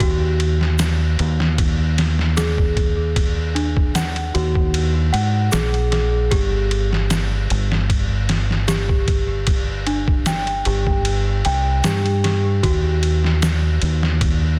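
A delicate, bell-like celesta plays delay-touched arpeggios over a dark, round fingered electric bass with tube saturation and a muffled, pitched-down sampler-style drum kit of thumpy kick, medium-tuned snare and ride cymbal, opening a cinematic, hypnotic trip hop excerpt at 76 BPM with a light 16th-note swing, tuned to A4 = 445 Hz. The bass and compressed drums sit up front, while an egg shaker with group handclap stays in the background from 0.8 to 13.6 seconds. The harmony moves from Ebm to G5 at 6.3 seconds and back to Ebm at 12.6 seconds, all within a dense, heavily limited modern master with studio reverb.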